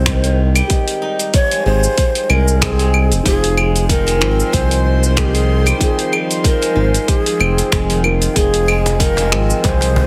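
The sound is heavily compressed and radio-like, with light reverb around an earthy, hypnotic stretch of organic downtempo in 4/4 with a gentle swing. A breathy, low wooden flute carries the melody up close, its soft, chiffy attack and unsteady vibrato trailing into digital delay. Beneath it, a bright steel-string zither rings out silvery fingerpicked arpeggios through tape echo, while muted, felt-like synth keys sit dark and intimate in the background with chorus and a pumping sidechain. A smooth, mellow synth bass holds the low end up front, pulsing with sidechain pumping alongside a tight electronic kick and an overdriven deep house kit of claves, finger snaps, hi-hat and shaker. An airy, detuned pad fades in at 3.3 seconds with chorus and phaser as the harmony shifts from Fm7 to Fm11, and a woody cajon with faint snares joins in the background at 8.9 seconds.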